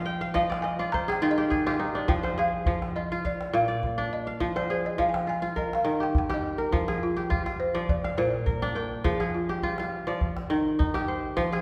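A fingerpicked kora opens at 0.0 seconds with a short fill, its crisp, ringing arpeggios sitting up front in this flowing, reflective excerpt of West African traditional string and xylophone music in a straight 4/4. At 0.4 seconds the balafon joins with a woody, round melody struck with soft rubber mallets, taking a solo through the opening section, while a deep calabash keeps the percussion going from afar. The harmony circles gently through Eb, Fm and Bb, and a second section begins at 6.7 seconds on the same cycle of chords. The balafon sounds dry and sits mid-forward in the mix, the kora rings out in the lower and upper registers, and the calabash carries the feel of a large room. The whole recording is heard from further back in a recital hall, with a lush reverb that lends the performance a spacious, contemplative glow.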